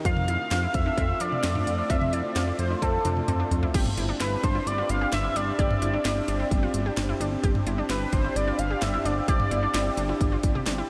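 Nostalgic and upbeat, this synth-pop excerpt moves at 130 BPM in a straight 4/4, tuned to A4 = 445 Hz, and sits in a dreamy mix soaked in a huge ambient reverb. Up front, a bold, retro octave-doubled lead carries the melody with a detuned sawtooth edge, colored by chorus, phaser and analog delay, until it stops at 10.2 s. Beneath it, a thick unison pad holds sustained chords with a slow attack and long release, while a bright, wave-folded unison pluck spins arpeggios through analog delay in the background. A glossy chorused synth bass with a pulse-width-modulated, filter-plucked tone anchors the low end. A layered house drum kit with a punchy kick, cracking snare and crisp hats drives things, and a fill from 2.8 to 3.7 s arrives just before the second section opens, where the harmony moves from F to Gsus4.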